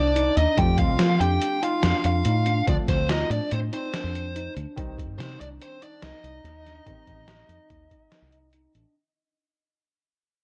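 A biting, overdriven lead guitar carries the melody up front with analog delay over a mellow, distant flugelhorn second line, while a tine electric piano spins arpeggios, a vintage grand piano with plate reverb sits in the background, a foam-muted fingered bass anchors the low end, and a gritty, pitched-down trip hop sampler-style drum kit enters at 0.2 s, all in a bright, intricate progressive instrumental at 143 BPM in 5/4 that moves between Cmadd9 and F, fading out over its 9 seconds through a worn, warbling cassette-tape sound.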